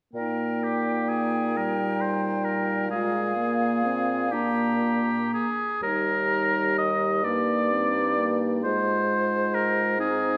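Classical slow romantic music for wind quintet, serene and lyrical, moving in a gentle, flexible 6/8 with rubato and uneven beats, cut from a longer piece. An airy, hollow flute with vibrato and a soft attack sings the melody until 5.5 seconds, while a clear oboe with light vibrato carries an up-front second line from 0.2 seconds. Beneath them, a mellow clarinet sits in the background, a dark French horn adds smooth-topped accompaniment, and a warm, present bassoon holds the bass, all bathed in the wet reverb of a scoring stage.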